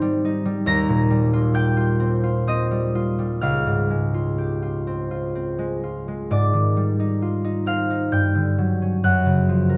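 The recording sounds like it was captured in a recital hall, with a wet reverb that lets each note linger for about 1.4 seconds. A solo concert harp sits up front across the whole 9.8 seconds, its fingerpicked strings warm and ringing over a span from Db2 to Bb6. This short classical fragment, cut from a longer piece, moves in a slow 3/4 at around 65 BPM, with uneven beats and a rubato feel that give it a wistful, gentle mood. The harmony drifts through lush chords, opening on Abmaj7 and passing through Eb69 and Dbmaj7 before reaching Abmaj7#11 at 6.3 seconds. Near the close it turns to a bare G5 and then settles on F#maj7, voiced with its third omitted, at 9.0 seconds.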